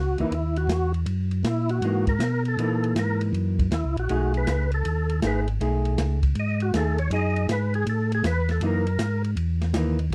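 Soulful and greasy, this short cut of swinging soul jazz organ trio at 159 BPM in F# mixolydian features a fat, lightly overdriven percussive tonewheel organ soloing with key click, chorus vibrato, slapback echo and a slow rotary speaker until 9.2 seconds, over a round, mellow tonewheel organ bass line, dark, clean picked accompaniment from a vintage hollow-body jazz guitar, and an open acoustic drum kit with dark cymbals, a boomy kick and a rolled-off top, all captured in a dry, close 1970s-style studio sound as the harmony moves from F#13 to B13 and back.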